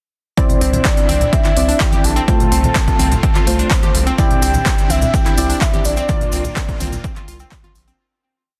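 Hopeful and euphoric, this short progressive house piece at 126 BPM in 4/4 sits in C mixolydian and spends its whole length in a drop that begins at 0.4 seconds, cycling through Cadd9, F/C and Bb/C before a fade-out from 5.5 seconds. A punchy, overdriven electronic kick drives a four-on-the-floor pulse up front, joined by a big-room dance drum kit with crisp programmed hats and claps on the backbeat, while a tribal conga loop sits close but in the background. A round, nasal analog bass plays off-beat under the sidechain pumping, and a deep, warbling chord stab holds vintage-toned chords with syncopated pushes, treated with chorus and digital delay. Behind them, a detuned supersaw swell evolves through a phaser as a sustained pad, and a crystalline wavetable pluck repeats a 16-step arpeggio through delay. On top, a soft octave-layered lead sings arching motif phrases with chorus, tremolo, tape echo and a cassette-worn tint, a grainy cabasa in sixteenths joins at 4.2 seconds, and the dense, heavily limited master carries light reverb.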